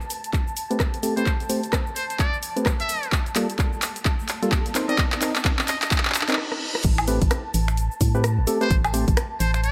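Late-night and moody, this short cut from a longer UK garage track rides a two-step groove at 129 BPM with a swung feel, set in A phrygian and moving from Am9 through Gm9 and Cm7 before returning to Am9. An airy, breathy pad holds soft sustained chords in the background, gently pumping against the beat, while a punchy, layered electronic kick and an up-front house kit of hi-hat, handclaps, finger snaps, rim clicks, shaker, woodblock and crash cymbal drive the rhythm in a studio reverb. A hollow, percussive organ stab with chorus and delay punctuates the harmony, filtered as the opening build-up unfolds, and from 1.2 seconds a buzzy, thin trumpet with a metal mute sings a solo line with light vibrato, its tone roughened by vintage sampler grit and softened by a low-pass filter. A riser climbs out of the background from 2.5 seconds, joined by a reverse cymbal at 5.9 seconds, leading through a brief break into the drop at 6.8 seconds. 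There a dark, organ-like FM bass enters up front with a fast, decaying attack, pumping under the groove to close the passage.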